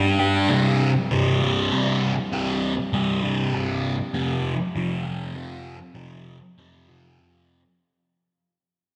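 Trippy and dark, this short rock excerpt, cut from a longer piece, moves at a slow 66 BPM in a straight 6/8 pulse. A thick fuzz guitar carries it alone from 0.0 to 7.6 seconds, electric, picked and double-tracked, sitting up front between C2 and G4. Its distorted tone is coloured by a phaser, giving the sound a heavy, saturated grain. The harmony rests on C5 before shifting to F5 at 4.1 seconds. A lush hall reverb with a 2.7-second tail soaks the mix in a dreamy haze, and a fade-out runs from 0.5 to 7.8 seconds.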